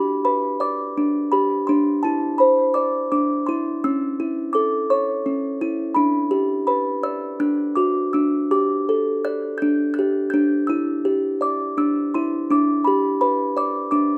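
A lone music box opens this innocent, gentle children's lullaby, its delicate, mellow tinkling sitting up front with a slapback echo and drifting freely in a rubato 6/8. The dry, open-air sound carries a soft, dark glow from a large box as the harmony moves from G through Cadd9, A and Em7 before settling on G/D, and the music stops at 14.2 seconds, cut from a longer piece.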